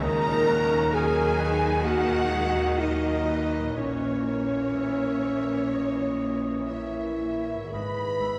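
A mellow French horn section holds sustained chords through this bittersweet, sorrowful cinematic excerpt in a slow, rubato 4/4 at 57-66 BPM, while a lush violin section with vibrato carries the melody over a second violin section, a clear oboe, an airy flute ensemble and a soft-edged clarinet, with a viola section and a polished grand piano in accompaniment, a ringing, thumb-plucked concert harp playing arpeggios, cello and double bass sections on the bass line, and the D#m, A#dim and G#m chords heard from further back in a reverberant concert hall.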